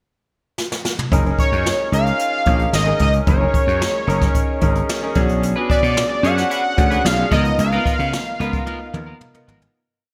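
A brushed jazz drum kit opens this short, breezy 1980s jazz-funk pop piece with a fill at 0.6 s, its boomy kick and medium-tuned snare sitting up front in a small room with gated reverb, then settling into a crisp sixteenth-note studio groove at 111 BPM in a straight 4/4. At 1.1 s the verse begins in F# major: a gritty, overdriven slap bass plays an agile, syncopated line, and a clear concert grand piano with analog chorus adds rootless, syncopated chords with long sustain and audible action noise. A fat, nasal analog lead carries the melody in short song-like motifs, its detuned sawtooth tone given a sub octave, ring modulation, a filter sweep and vibrato. From 5.4 s a twangy, clean electric guitar with analog chorus joins quietly with a picked sixteenth-note rhythm part. The harmony moves from F#69 to Bm6 and then C#13, and the piece closes with a second drum fill as it fades out. The production is bright and digital in the 1980s manner, with light reverb and a tuning slightly below standard pitch.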